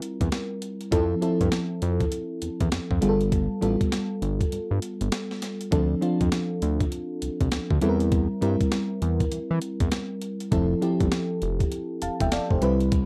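A dry, close recording with a 1970s studio character and light reverb opens this short cut from a longer new jack swing R&B piece, bouncy and confident at 100 BPM in 4/4 with a 62% swing on the sixteenths. A mellow FM electric piano carries the chords from the start, its soft, round, dark tone touched with a noise layer and chorus, moving through C7/E, Fmaj7, G9 and Dm7 between F3 and A5. A breakbeat sampler-style drum kit plays hi-hat, thumpy kick and medium-tuned snare, sounding gritty and compressed as if re-recorded in a small room. Entering at 0.2 seconds, a fat analog bass spans E1 to E3 with a thick, detuned sawtooth-and-triangle tone, ring modulation and a filter sweep. A brief break falls between 4.5 and 5.7 seconds before the groove resumes on Dm7, with all three parts sitting up front in the mix.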